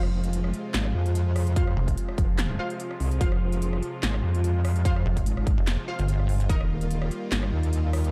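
Heavy wobble dubstep in F minor at 146 BPM with a swung, half-time feel, this chaotic, aggressive excerpt is led by an up-front metallic wobble bass, saturated and chorused with overdrive, joined at 1.8 s and again from 5.1 s by a pulsing, detuned pluck wobble bass. A lush supersaw pad holds sustained chords through phaser, gritty 12-bit sampler texture and sidechain pumping, while a bold, ring-modulated orchestra-hit-like stab with dub echo punctuates until 6.6 s. A big-room dance kit with punchy snare, crisp hats, handclaps and rim clicks carries the groove, a punchy tape-warm kick enters at 1.6 s, and the harmony moves from Fm to Ebadd9 in a dark, digitally ambient production.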